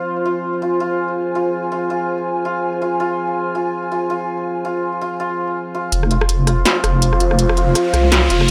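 A swung, half-time drum and bass groove at 164 BPM in F minor sets a dark, spacious mood in this short cut from a longer piece, opening on a deep, moody, detuned analog pad holding an Fm chord with chorus while a bright, shimmering santur rings out hammered arpeggios through a low-pass filter and tape echo. At 5.9 seconds a build-up begins as the harmony moves to F5, and a saturated, wobbling deep bass with chorus arrives up front alongside an electronic industrial kit of smooth hats, rim clicks and a clanging snare in studio reverb. An electronic riser enters at 7.0 seconds, all within a gritty, dry hardware sound and digital ambience.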